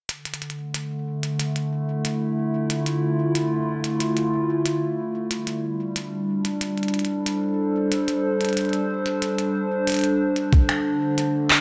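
IDM at 92 BPM in D minor, intricate and cerebral, where a warbling, nostalgic lo-fi pad with chorus holds dark sustained chords from Dm through G7sus4 to Dm7 while a glitchy electronic kit of finger snaps, handclaps and clicky hats runs throughout, a gritty, thumpy kick lands once at 10.5 seconds, and an echo chamber reverb of 2.3 seconds gives this excerpt an echo-heavy space.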